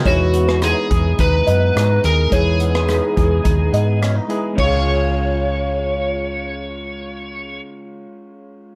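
This hazy, nostalgic slice of indie and bedroom pop moves at 106 BPM in a straight 4/4, cut from a longer piece and recorded dry with little reverb. An overdriven slide guitar carries the melody up front, its dark, fingerpicked tone wrapped in lush chorus and slapback echo. Beneath it, a bright, twangy electric guitar through a small old amp sounds slightly broken-up, its ensemble chorus giving the pitch a warbly drift. Soft, mellow electric-piano-like synth keys with chorus fill out the accompaniment, while a woody, buzzing kalimba sits in the background as a second line until about 6.2 seconds. A round, hollow-body short-scale bass plays fingered and prominent, and a distant, roomy unplugged drum kit, struck with bundle sticks, adds hi-hat, tight kick, dark ride and rim clicks until 4.7 seconds, just as the harmony shifts from Emaj7 to Db.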